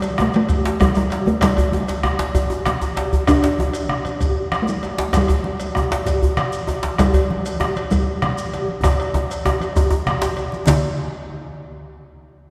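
West African traditional drum ensemble music in 12/8 at 130 BPM, powerful and driving, where a resonant talking drum carries the melody over a metallic cowbell, a grainy shekere and a tight, cracking djembe set back in the distance, joined at 0.2 s by a round, up-front bombo, thick-skinned, damped congas and a second djembe up front with metal rattles, the ensemble ringing in a reverberant church acoustic before a drum fill from 8.8 s to 10.7 s.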